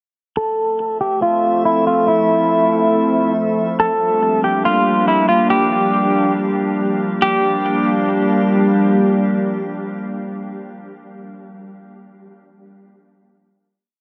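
A half-time feel at 140 BPM in 4/4 carries this hazy, spacious atmospheric cloud-rap piece in G dorian, tuned to A4 = 438 Hz, with the harmony moving from Fmaj7 to Gm7 at 3.8 seconds and a filter sweep running through the breakdown until a final chord takes over at 7.2 seconds. Up front from 0.4 seconds, a clean, compressed electric guitar picks a sparse melody, repeated like a sampled loop, through a low-pass filter and delay. Beside it, a glassy, ethereal FM pad holds slow-attack chords with ensemble chorus and a long release, while a quieter texture of drifting sine overtones with chorus floats beneath, and the whole piece is bathed in huge ambient reverb and the warble of worn cassette tape with pitch drift.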